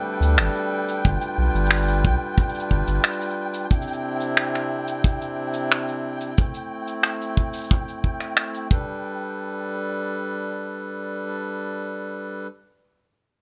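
A tight, up-front acoustic kick drum and brushy cabasa with finger snaps keep a straight pulse in 4/4 in this pastoral, playful folktronica fragment, while a round, deep sine sub bass sits beneath them until 3.0 seconds. A reedy, nasal, breathing hand-pumped harmonium holds sustained chords throughout, moving from Gadd9 through G7, Cadd9 and Am, and a very quiet, bright, shimmering hammered dulcimer rings out arpeggios until 5.9 seconds. Above them, a grainy, flickering granular texture hovers on a high G with a slow attack and plate reverb until 9.1 seconds, after which the harmonium carries the closing passage alone in a lightly reverberant space.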